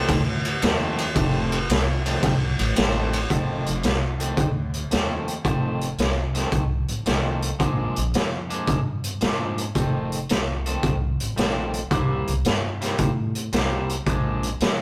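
The raw garage drum kit sits up front, its boomy kick, medium-tuned snare, hi-hat and ride cymbal sounding gritty and saturated with a rolled-off top in a small room. An electric guitar at the edge of break-up plays a twangy, picked riff over a woody pizzicato upright bass in this soulful, laid-back electric blues shuffle, moving from F7 through Bb7 and C7. The cut from a longer piece has the rough feel of a rehearsal-room recording with tube saturation and light reverb.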